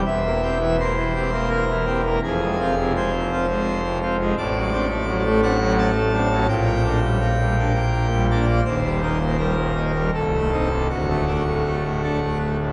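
Solemn and dark, this 12.7-second fragment of a classical chorale-style piece in 3/4 at 84 BPM, played with rubato and tuned to A4 = 439 Hz, features a solo pipe organ on full organ with mixtures, majestic and brilliant in its romantic voicing, spanning C1 to A5 and placed up front in a cathedral reverb with a 6.0-second decay as its harmony moves from C7/E through Fm, D7/A and Eb to a close on D.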